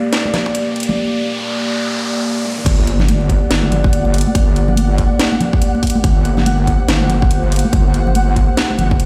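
Swung sixteenths at 142 BPM fall into a half-time deep dubstep pulse in G harmonic minor, brooding and meditative, as a dark, wave-folded analog pad with chorus holds sustained chords under an electronic riser and noise sweep through the build-up, while a garage drum kit with a cracking snare lands a fill at 2.4 s. The drop at 2.7 s brings an impact and a heavy, saturated wobble bass up front beside a tight, tape-warm electronic kick that has been thumping since 0.5 s, with damped congas, present from 0.3 s, echoing in the background. From 3.3 s a flickering, grainy texture with its own reverb hangs high above, and the whole cut rings in a bare stone room on a big sound system.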